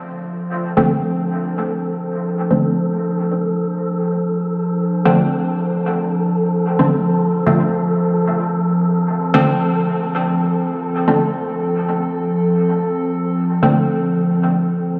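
Drenched in a huge ambient reverb, this free-time dub techno excerpt sounds as if it were played on a big sound system in a bare room. Its mood is hypnotic and hazy, cut from a longer piece. A warbling, tape-like pad opens at 0.0 s and holds sustained chords throughout. Its square and triangle tones are detuned and ring-modulated, with chorus adding a nostalgic, lo-fi mellowness up front. From 0.2 s, a dark, breathy, wind-like noise texture drifts alongside it as an airy sine-based layer. At 0.8 s, a deep, muted dub chord stab enters up front; its detuned sawtooth plucks are filtered and evolving, smeared through chorus, phaser and dub echo until it stops at 13.8 s.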